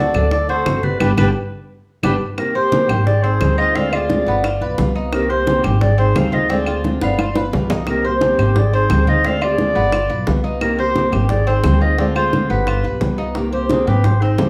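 Nostalgic yet danceable, this Cuban son and guajira passage moves in a straight four with a rolling minor-key progression that keeps circling back on itself. An up-front clarinet carries the melody in a classical style, sounding distant and roomy under plate reverb, while a hollow, airy bamboo shakuhachi traces a softer second line in the background, with vibrato and a crisp, chiffy attack, until it drops out at 13.2 seconds. Beneath them, a dark fingerpicked steel-string guitar supplies the accompaniment, and a Cuban tres adds metallic arpeggios from its doubled strings. A thumpy, woody pizzicato upright bass sits forward in the mix, while round, close bongos, bright, damped congas and background claves with a wooden click drive the groove. The band hits an accent around 1.0 seconds, drum fills mark the phrases, and the clarinet takes a solo at 13.4 seconds as the passage is cut off.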